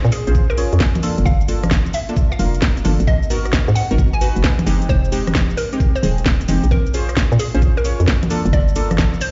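A punchy, up-front FM bass and a tape-warm garage kit of cracking snare, metallic hats, rim click, cabasa and congas open this skippy, moody two-step UK garage excerpt at 132 BPM with heavy 16th-note swing, soon joined by a knocking electronic kick, a hollow, detuned square-wave pluck with chorus and dub echo, and soft, dark chord stabs with delay moving through Bbm7, Gm7, Abm7 and Fm7, the mix sounding as if played on a big sound system in a bare room with large studio reverb and a dull, rolled-off top.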